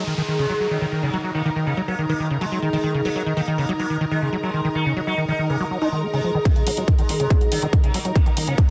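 Driving and psychedelic, this short cut from a longer psychedelic trance track runs at 141 BPM in a straight 4/4, centred on Eb minor. A bright, buzzing sitar carries the melody with a shimmer of sympathetic strings, treated with phaser, delay and sidechain pumping, while a squelchy, resonant liquid acid bass sits up front with its riff under a filter sweep through the first 6.5 seconds. Behind them, an evolving wavetable pad morphs with chorus, phaser and its own reverb, also under a filter sweep, and a rich studio string section adds smooth, bowed ensemble texture with light vibrato. A downlifter and riser sit in the background at the opening and again at the very end. At 6.5 seconds a build-up begins as a distorted, layered electronic kick lands up front with electronic hi-hats, joined at 6.7 seconds by a tight, nasal sequencer bass, all within a moderate plate reverb and a dense, heavily limited modern master.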